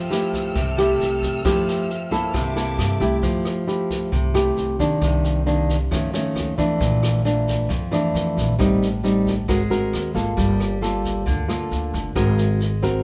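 Opening on a lush, bowed violin section holding sustained chords over an up-front, thumb-plucked nylon-string guitar, woody pizzicato upright bass, brushed drums and a grainy tube shaker in the background, this sunny, sophisticated bossa nova excerpt in F major at 134 BPM drops the violins at 3.2 seconds and carries on through rich jazz chords like Fmaj9, Bbmaj7#11 and Ab9, all in a moderate, live-in-one-room studio reverb.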